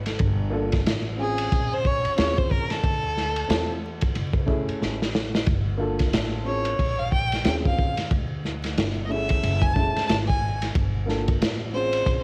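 Nocturnal and smoky, this jazz-hop excerpt from a longer hip hop piece moves at 91 BPM with a swung sixteenth-note feel. A gritty, saturated breakbeat kit with a tight kick and dark cymbals sits up front under vintage 12-bit sampler crunch, with a fill at 4.8 seconds, while a woody, thumpy pizzicato upright bass and a worn, slightly detuned upright piano with audible action noise and tape coloring move through mellow, mostly minor ninth chords. From 1.2 seconds, a single bowed violin carries the melody with focused, close vibrato through its own cassette haze, all set in a small room with light reverb and vinyl crackle for a homespun feel.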